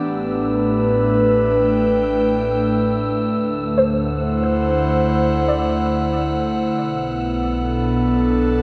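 Melancholic and spacious, this ambient passage, cut from a longer piece, rests on an up-front, breathy, chorused pad of sustained chords moving from A7sus4 to D7 and Bm7 under a filter sweep, while a deep sine sub bass and a dark, wind-like tuned noise texture fade in beneath it, and a soft, round pluck plays background arpeggios from 3.8 to 6.7 seconds through ensemble chorus, cassette tape colouring and dub echo, the mix sitting in a wet, echo-heavy spring reverb.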